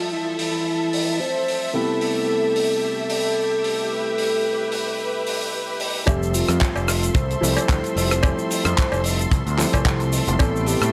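A 4/4 nu-disco groove at 111 BPM, swung on the sixteenths, sets the tight funk drum kit's handclaps, hi-hat, rim click and shaker going from 0.4 seconds under a sleek, cosmic haze of chorused, phased, tape-echoed octave-layered synth lead, a dark, boxy concert grand with long sustain, and biting, lush strings that pump under sidechain behind a low-pass filter, all circling Fmaj7 and Am7. At 6.1 seconds the drop arrives as a round, overdriven picked bass, a tight up-front kick and a compressed, saturated cowbell enter together, filling out the groove beneath the moderate studio room reverb of this fragment of a longer piece.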